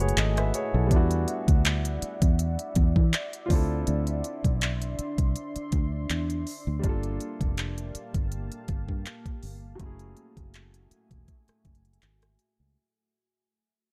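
A smooth, produced electronic drum kit sits up front, with a knocking kick, smooth hi-hats, handclaps and rim clicks carrying a tape-warm quality. This is late-night, sensual contemporary R&B at 81 BPM in 4/4, with a light swing on the sixteenths. A fingered electric bass, round, dark and foam-muted, also sits close, its direct, amped tone grounding the low end. A grand piano supplies warm accompaniment, while a deep, moody pad of detuned sawtooth and sine layers with a sub octave holds sustained chords, its slow attack and long release softened by chorus and its own reverb. The harmony moves through F#m9, Em9, Dm9 and Gm9 before returning to F#m9 at 9.8 seconds, and the short cut from a longer piece fades out from 2.1 seconds to its close at 12.8.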